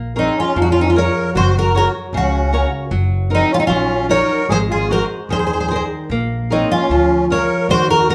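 Longing and passionate, this rubato fado-style ballad in Bb minor at 76 BPM in 2/4 opens with a fingerpicked flamenco guitar and a dark, woody pizzicato upright bass, joined at 0.2 s by an up-front, full-bodied twelve-string acoustic guitar fingerpicking the shimmering, octave-doubled melody with audible finger squeak and by a reedy musette accordion carrying a second line, the band playing live in one room under wet large studio reverb as the chords move from Bbm7 through Gb, Ebm/Gb and Abadd9 back to Bbm7.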